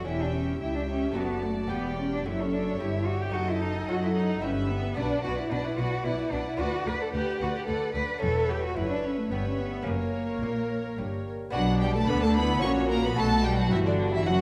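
A solo cello carries the melody up front with expressive vibrato and portamento in this dramatic, stormy baroque-style concerto movement in 3/4, cut from a longer piece. Rich violin sections, one close and expressive, share the melody and a second line above it, while a lush viola section and a delicate, bright fingerpicked gut-strung lute fill in the accompaniment. A smooth cello section in the background and a distant, soft-attacked double bass section hold the bass, all within a dark production and a moderate scoring-stage reverb.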